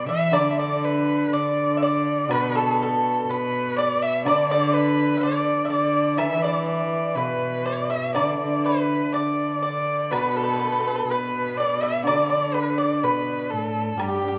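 In a free, rubato 2/4 at 61 BPM, this pastoral and graceful Chinese traditional chamber piece, cut from a longer work, sets an up-front, dark erhu singing the melody with vibrato and portamento over a floating, sul tasto cello and a dry, percussive, fingerpicked pipa on second lines, a shimmering, ringing hammered dulcimer in accompaniment, and a woodblock tucked in the background from 0.3 seconds, all in a moderate recital hall reverb.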